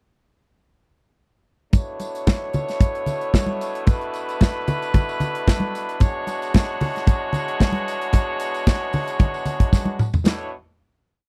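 Disco at 113 BPM in B dorian, sultry and danceable, where a muted, nasal French horn section holds sustained chords from Bm11 to E13 over a polished, up-front acoustic drum kit playing a four-on-the-floor beat with sixteenth-note hats and bright cymbals, congas with a slap on two and open tones on four, and a jingly shaken tambourine in the background, all in a dry, close 1970s-style sound until a drum fill at 9.7 seconds leads into a final Bm11 chord at 10.3 seconds.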